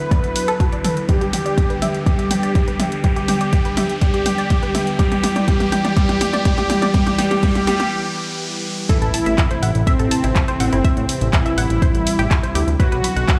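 Melancholic and dark, this melodic techno excerpt builds under a riser, drum fill and filter sweeps on a grainy, tape-echoed supersaw melody, a crystalline wavetable pluck and a warbling unison pad, with a tight sequenced arpeggio, a deep layered kick and analog drum-machine claps, hats and toms, then breaks at 7.9 seconds before the drop at 8.9 seconds brings an impact and a fat, detuned analog bass, the synths and bass pumping in a stone room's reverb.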